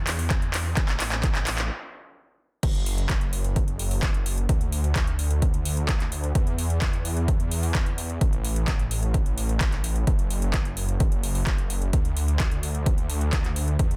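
Powerful and anthemic, this festival progressive house excerpt at 129 BPM opens with a short build-up: a drum fill runs until 1.7 seconds, then a brief stop gives way to the drop at 2.6 seconds. A thick, saturated detuned saw bass sits up front, chorused and pumping against the sidechain. A punchy, up-front electronic kick drives it alongside a big-room dance kit of crash cymbal, handclaps and metallic hi-hats, all set in digital ambience within a dense, heavily limited modern master.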